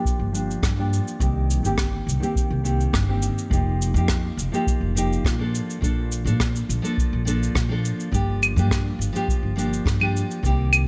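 Sunset chillout in G minor at 104 BPM, this relaxed excerpt from a longer piece moves through Gm7, Cm7, F9sus4 and Bbmaj7 before returning to Gm7 at 8.1 seconds. An up-front, full-bodied fingerpicked nylon-string guitar carries the accompaniment through a low-pass filter and delay, with a filter sweep running across its whole length. Alongside it sit a dry, deep analog electronic kick, acoustic cabasa, rim click and claves played with brushes, and a woody, growly pizzicato upright bass with tube saturation, all set in studio reverb.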